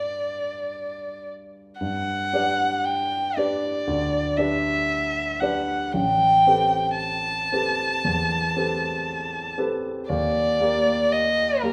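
Bathed in a wet recital-hall reverb, this dreamy, luminous impressionist classical duo in G major drifts at a rubato 58 BPM in 4/4, as a dark, smooth-topped bowed violin sings the up-front melody with soft attacks, vibrato and expressive portamento over a warm grand piano whose short-sustained accompaniment moves from Gmaj9 through Gmaj7 and Am9 to an Ebmaj7 at 10.1 seconds.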